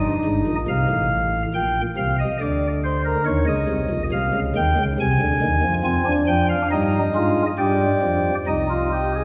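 This is a classical, baroque-style three-part fugue for pipe organ, solemn and contemplative in mood, moving in an unhurried 3/4 with a straight feel. The organ plays alone throughout the fragment, lasting 9.2 seconds and drawn from a longer piece, using soft flute stops spread from Ab1 to Ab5 with a baroque voicing. A gentle chiff marks the start of its notes, and the warm flute tone sits up front even as the listener seems placed further back in a wet church space with a 2.5-second reverb tail. The harmony passes through chords such as F7, Eb7, Fm9/G and G5 before settling on Cm. The instrument is tuned slightly below standard pitch, at A4 = 439 Hz.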